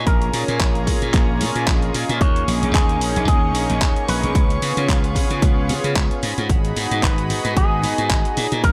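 This groovy, sleek nu-disco fragment opens at 0.0 s with three parts together: a dark, clean electric guitar run through an envelope filter and analog delay carries the melody, a glassy slap bass sits bright and up front, and a chamber violin section holds sustained chords in the background with light vibrato, a reedy gut-string tone and sidechain pumping. From 0.1 s a smooth, mellow analog pad joins with a detuned sawtooth-and-triangle sound, a sub octave, a slow attack and long release, colored by chorus, cassette tape character, analog delay and its own sidechain pumping. The rhythm comes in at the same moment, where a punchy, layered electronic kick sits up front with tape-warm weight, and a gritty, compressed sampler-style soul kit adds handclaps and hi-hat, both kits set in studio reverb. The groove has a light swing on the sixteenths in four-four time, and the harmony moves through A#m7, D#7sus4, C#7 and G#m7. 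A digital ambience surrounds the whole mix, giving the short cut a polished, dance-floor sheen.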